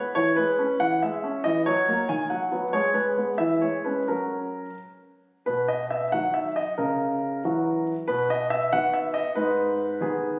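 Classical-period piano sonatina in B major, an elegant and playful passage cut from a longer piece, moving in 6/8 at 92 BPM with free rubato and tuned to A4 = 439 Hz. A solo grand piano sounds clear, intimate and polished, placed up front with long sustain and audible action noise, ranging from G#2 to G#5 as its harmony drifts through C#m7/E, F#7/E and G#m before a second section at 5.5 seconds settles on B and F#7/C#. The phone recording sits in a wet recital hall reverb of about 1.6 seconds, lending the close piano a gently resonant halo.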